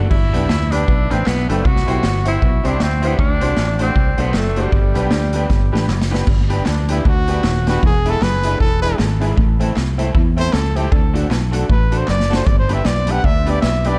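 Ska at 155 BPM in G major with a bouncy, upbeat swing, cut from a longer piece, where a round, punchy fingered bass and a boomy, up-front street-band drum kit with dub echo drive beneath background guitars at the edge of break-up (one twangy with lush chorus and dub echo, one very quiet picking a riff), jangly tack piano stabs and hollow, very quiet group handclaps, while a vibrato-laden tenor saxophone with scooped notes carries the melody until 5.9 s before a trumpet with light vibrato takes over for a solo from 6.7 s, all in a dark production with light reverb.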